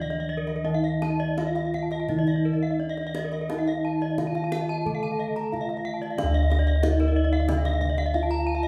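A brilliant, shimmering fragment of Balinese gamelan in a steady 4/4 opens with a soft, mellow bronze metallophone played with padded mallets carrying the melody, a dry, full, close-miked lower metallophone struck with a wooden mallet as accompaniment, and round, beating bossed gongs in the bass, while two bright horn-mallet metallophones spin arpeggios above, these three upper metallophones ringing with the beating of paired tuning, and a tight kendang keeps quiet percussion from 0.1 seconds, the whole ensemble playing live in one room with a large studio reverb.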